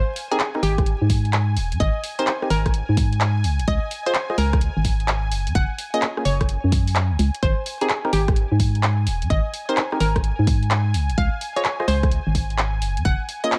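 UK garage in a bouncy, soulful two-step groove at 128 BPM with a swung feel in Ab major, where a hollow, ring-modulated square pluck carries the melody through chorus and tape echo over smooth, pumping analog pad chords, a dark, up-front organ-like FM bass, nasal wave-folded organ stabs, a house kit of handclaps, rim clicks and bright hats, and a punchy electronic kick arriving at 0.8 seconds, all in a dry mix dusted with vinyl crackle as the Abmaj9, Dbmaj9 and Gbmaj9 chords cycle.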